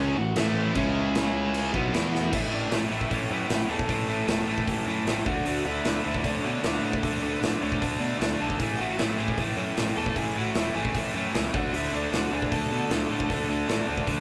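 A straight, driving 4/4 pulse powers this energetic, rebellious punk rock clip, where a bright, distorted electric guitar riff sits up front with a growly fuzz-picked electric bass, a raw overdriven garage guitar melody lurks in the background, a second distorted guitar and a thick, double-tracked fuzz guitar thicken only the opening 2.3 seconds, and a big rock drum kit with boomy kick and crashing cymbals enters at 0.4 seconds and fires a fill at 2.1 seconds, all caught in a rough rehearsal-room sound with tube saturation and a small room's reverb.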